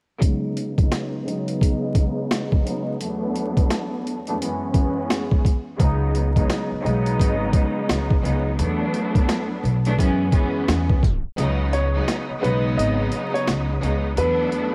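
A lush, bright studio string section sits up front, its bowed ensemble vibrato running through a filter sweep over cassette-tape grit as it carries suspended ninth chords moving from Db9sus4 through E9sus4 to Gb9sus4. Alongside it, a gritty, pitched-down sampler-style kit drives a soulful boom-bap groove at 86 BPM in 4/4, with a swung sixteenth feel, a thumpy kick, a high-tuned snare and hi-hat, all compressed and overdriven. At 5.8 seconds a woody pizzicato upright bass joins in, and a tape stop at 11.0 seconds brings a new section at 11.4 seconds, where the kick drops out. Here a very quiet, flute-like tonewheel organ adds soft sustained chords through a fast rotary speaker, and moments later a brilliant upright piano picks out a short, intimate melody, its action noise audible and its sustain brief. Vinyl crackle and the texture of a home cassette recording surround this short excerpt from a longer piece.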